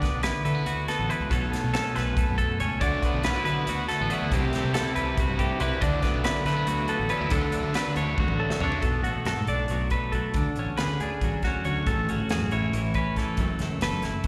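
A bright, up-front twelve-string electric guitar opens this intricate, playful stretch of math rock and midwest emo in 7/8, joined from the start by twangy clean guitar arpeggios, a dark, round fuzz bass and a polished, punchy drum kit working across hi-hat, kick, snare and toms. Both guitars carry a slapback echo, while the bass has a gritty overdrive. At 2.8 seconds a double-tracked, overdriven guitar riff enters, also with slapback echo and sitting slightly lower in the mix, and it drops out at 8.8 seconds. A drum fill just before that point leads into a new section, where the harmony moves from colourful D69, Bsus2 and Cmaj7 voicings toward Bm7, Amaj7 and F#m7. The band is heard as a live gig through the venue's PA, with the light ambience of a recital hall around it, and the passage is cut from a longer piece.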